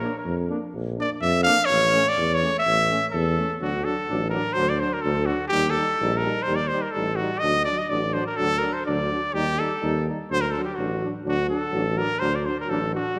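Bathed in a wet concert-hall reverb, this fiery, bittersweet Balkan brass band passage in 2/4 puts a clear, smooth-topped trumpet melody up front over a bright, distant trombone and a vintage euphonium in the background, while a warm tuba with light vibrato carries the bass, every part played in a classical style.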